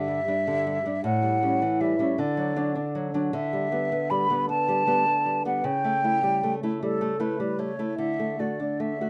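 A light reverb surrounds this brief, lyrical romantic duo in D major, moving in a rubato 6/8 at 52 BPM counted in dotted quarters. The silver concert flute carries the melody up front with an airy, hollow tone and vibrato, its tongued notes ranging from A4 to B5. Close beside it, a small, dark nylon-string guitar fingerpicks the accompaniment through Em7/G, A7, D, Em7/D and A7/C# before settling on D at 8.0 seconds, with tuning set to A4 = 441 Hz.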